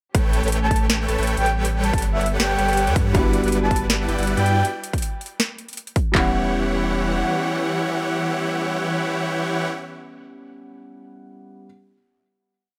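A half-time groove in 4/4, with a light swing on the sixteenths, drives this lush, bittersweet future bass piece. It opens straight into a drop, where two overdriven electronic drum kits stack up. One gives a punchy, up-front kick and claps, and the other adds a sharp snare and metallic closed hi-hats with hat rolls. Huge, detuned sawtooth supersaw chords throb in tempo as a bright, spread-voiced riff with sidechain pumping and tape echo. Underneath sits a deep, thick saturated sub bass that follows the chord rhythm, and a symphonic string section holds a smooth, vibrato-rich pad in the background. A breathy, flute-like synth lead with chorus and vibrato plays short answering phrases. A soft, boxy, felt-muted upright piano joins at 3.1 seconds with held rootless chords and syncopated pushes. As the drums drop out, the piece settles onto a final chord at 6.1 seconds, and the dark-toned piano rings on alone to 11.7 seconds in a light reverb.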